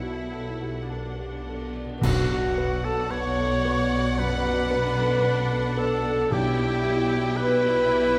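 A cinematic, emotional film score for orchestra, bittersweet and sorrowful, moving with a slow, rubato pulse in this short excerpt cut from a longer piece. Two violin sections open together, one carrying a lush melody with vibrato and portamento from a distance and the other a smooth second line, over a clear viola accompaniment, a soft felt-muted upright piano with audible action noise in the background, very quiet ringing harp arpeggios, a dark, woody cello bass and a double bass section with expressive portamento. At 2.0 seconds the full orchestra arrives with an accent: an airy silver flute and an oboe add second lines, a mellow French horn section holds sustained chords, round soft-mallet timpani sit close and dry in the background, and bright clash cymbals with bass drum sound until 4.2 seconds. The harmony settles on B minor before shifting to an Em7 over B near the close. A stone room reverb gives the whole a wet, spacious glow.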